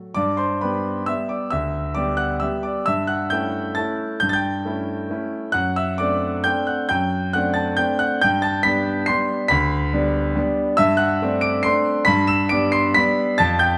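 A clear, up-front concert grand piano plays a sparkling, graceful classical waltz alone in a flexible, rubato three-time, its deep bass and long sustain ringing through a moderate recital-hall reverb across this short cut from a longer piece, moving through harmonies that settle back home by 12.1 seconds.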